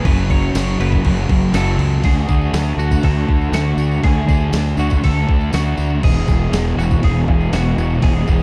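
A straight 4/4 pulse from an up-front, sampler-style drum machine with a thumpy kick and fat snare drives this blissful, wistful shoegaze and dream-pop rock excerpt, where a growly, overdriven fuzz bass sits forward under a dark, thick fuzz guitar riff with distortion and subtle chorus, a crunchy overdriven guitar riffs in the background through reverse reverb, a double-tracked overdriven guitar riff appears only until 2.0 s, a bright, twangy twelve-string guitar picks arpeggios with subtle chorus and delay, and a jingly vintage tambourine joins at 0.5 s, all in light digital ambience as the chords move from F#m to D at 2.0 s and E at 6.0 s.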